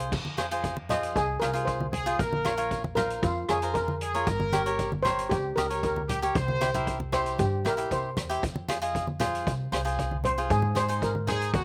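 Recorded in the open air with little reverb, this short calypso cut from a longer piece has a close, unadorned sound and a cool, brooding mood over a straight four-beat feel. Up front, a metallic, shimmering double-seconds steel pan played with medium rubber sticks carries the melody as a solo, backed by a bright, crisply picked acoustic cavaquinho. Underneath, a woody, thumpy pizzicato upright bass anchors the low end, while a street-band drum kit with dark cymbals, a boomy kick, hi-hat and rim click sits in a small-room sound, joined by low-tuned congas that are close and dry with a slapback echo. A punchy, smooth-topped horn section adds a second line from 1.9 to 7.0 seconds and returns briefly at 11.3 seconds. The harmony moves through Fm, Bbm, Gdim and C before returning to Fm and landing on Ab.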